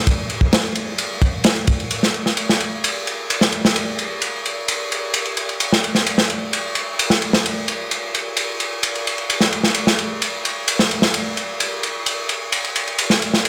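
A crunchy breakbeat drum kit kicks in at 0.1 s and carries this raw, energetic excerpt on its own at a straight 130 BPM in 4/4, with a tight kick, a medium-tuned snare and a dark ride cymbal. The acoustic kit sounds saturated and gritty, with a rolled-off top and a mid-forward, up-front presence in a dry studio room. After a brief opening, the groove shifts into a new passage at 1.9 s that runs until the cut at 13.5 s.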